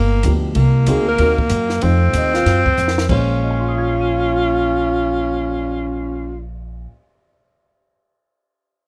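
A close, detailed recording with light reverb captures this smoky, swinging small-group jazz fragment in Bb minor at 189 BPM, where a bright, forceful alto saxophone carries the melody from 0.9 seconds over a breathy, whispered tenor saxophone, a woody pizzicato upright bass, a dark, mellow baby grand piano in the background, and a compact cocktail drum kit with a high-tuned snare and dark cymbals that closes the first phrase with a fill at 2.8 seconds before the harmony settles on Bbm9 at 3.1 seconds.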